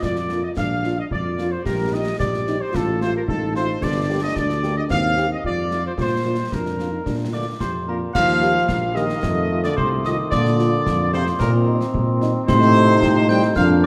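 Spirited and rousing, this military-style march for wind band moves at 111 BPM in a straight 2/4, set in B-flat major and cut from a longer piece. A warm trumpet section carries the melody up front with light vibrato and a smooth top, while a mellow, close-miked solo euphonium with a soft attack sings a second line beneath it. A dark, punchy solo tuba anchors the bass, concert snare drum, concert bass drum and clash cymbals with dark cymbals keep the march going from a small-room acoustic, and a French horn section enters at 0.3 seconds with accompaniment in the background. At 7.3 seconds a glockenspiel struck with hard plastic mallets adds a metallic, bell-like, airy second line, and from 8.2 seconds a clear, tight trombone section holds very quiet sustained chords as the music moves into a new section opening on E-flat and F. The whole band sits in a wet concert hall reverb that lends the ensemble a grand, ceremonial space.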